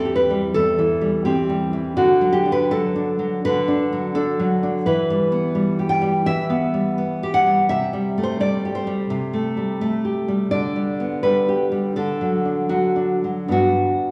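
A fingerpicked nylon-string guitar plays alone and up front, its fresh strings giving a warm classical tone across a range from E2 to G5. This nostalgic romantic excerpt moves with a free rubato feel through a progression that begins on C/E, passes through D, Em and Am7/C, and settles on G at 13.5 seconds. A wet recital-hall reverb, as heard in a church or concert hall, lets each note hang in the room.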